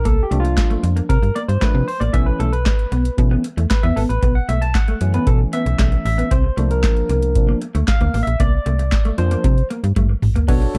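Early-eighties boogie funk at 115 BPM, danceable and dry in a dark production, where a barky tine electric piano, lightly overdriven with lush chorus, carries a solo over C9sus4 and B9sus4 chords while a snappy, metallic slap-like FM bass and a booming analog drum machine with deep kick, crisp snare, handclaps and toms sit up front, a dark, slightly broken-up picked electric guitar riff with subtle chorus rides beneath, and a drum fill arrives at 10.0 seconds in this excerpt cut from a longer piece.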